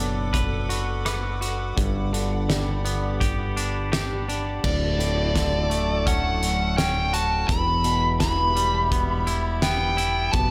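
An evolving, warbling wavetable pad with chorus and built-in reverb sustains chords in the background beneath twangy, bright arpeggios from a clean electric guitar with tape echo and a growling, overdriven fingered bass up front, with a loose acoustic indie drum kit of punchy kick, fat snare, rim click, hi-hat and dark cymbals joining at 0.3 seconds, before a dark, smooth overdriven lead guitar with tape echo enters at 4.6 seconds to carry the melody in this hopeful, cinematic post-rock excerpt at 84 BPM in D major, set in a small room with light reverb.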